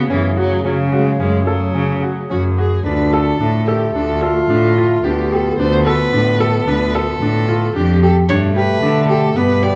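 Contemporary chamber music in an uneven 5/4 at 110 BPM, this hypnotic, urgent fragment sets a rich, vibrato-laden viola melody over an earthy, boxy bowed cello bass, with a solo French horn carrying a second line in classical style. A clear, vintage grand piano adds short-sustained arpeggios while a very quiet, mellow woodwind section holds tight sustained chords, the harmony moving from F#madd9 to D minor at 2.9 seconds and on to Gadd9 at 8.3 seconds. The sound is dark and warm, bathed in the lush reverb of a recital hall.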